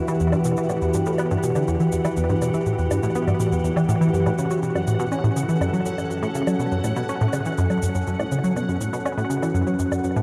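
Hypnotic and mysterious, this short cut from a longer piece of ambient, sequencer-driven space music sits in a steady, straight 4/4. A tight, driving sequenced synth carries the riff up front, its detuned sawtooth and square tones shaped by a filter pluck and softened by chorus and delay. Above it, an evolving wavetable pad holds sustained chords, morphing through detuned triangle and sine layers with a slow attack and long release, moving from Emadd9 to F#m at 4.1 seconds. A bubbling stepped-filter texture sits high and resonant in the background, fading in across the whole span with random filter steps. Dry, overdriven electronic shaker and woodblock tick along with delay, and the entire mix floats in a huge, wet reverb with an 8.9-second tail and a hazy cassette-tape character.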